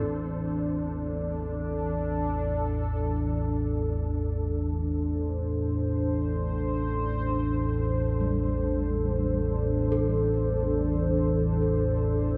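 A cavernous wash of huge reverb surrounds this ominous dark ambient drone in free time and A minor, cut from a longer piece, where a warbling analog sawtooth drone with a filter sweep sits up front beneath a bright, resonant pad of sustained chords, while a mellow gamelan-type bronze metallophone shimmers through tape-echoed arpeggios in the background and a bronze singing bowl rings barely audibly from 0.1 seconds.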